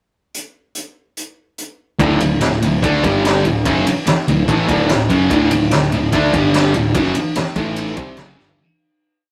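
A straight 4/4 garage stomp groove at 146 BPM drives this short, swaggering and rowdy garage rock piece in D major, with the raw acoustic drum kit opening alone at 0.3 seconds for a pickup bar of hi-hat, kick, snare, ride and toms. The kit sounds gritty and saturated in a small room, with a high-tuned snare, a boomy kick and a rolled-off top, sitting up front. At 2.0 seconds a thick, bright fuzz guitar crashes in with a double-tracked, picked power-chord riff, prominent in the mix and moving through D5, G5, D and A5. A growling overdriven electric bass enters with it, playing driving eighth notes that double the guitar riff from a spot further back. The rough rehearsal-room sound carries a moderate reverb, and the piece fades out from 6.9 seconds, with a final drum fill just before it ends.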